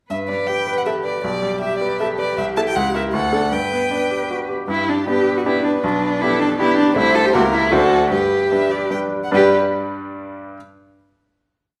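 This quick classical-period movement for piano trio, in G major and 3/4 at 157 BPM, is a complete miniature with a spirited, graceful mood. The violin carries the melody with a warm, soft-attacked tone, expressive vibrato and touches of portamento, and it also offers counter-melody, answers at phrase ends and sustained chords. The cello sits up front with a rich, focused sound and a smooth top, bowing a second line that shifts between counter-melody and melody. The bright baby grand piano is brilliant, present and polished, with short sustain, and it supplies rocking broken chords and bass and chords on the beats. The opening phrase is stated twice, with the second pass slowing down from 6.4 s into a cadence through diminished and dominant harmony. The piano sustains the final chord until 10.6 s, outlasting the strings. The whole trio sounds in a recital hall with a wet reverb.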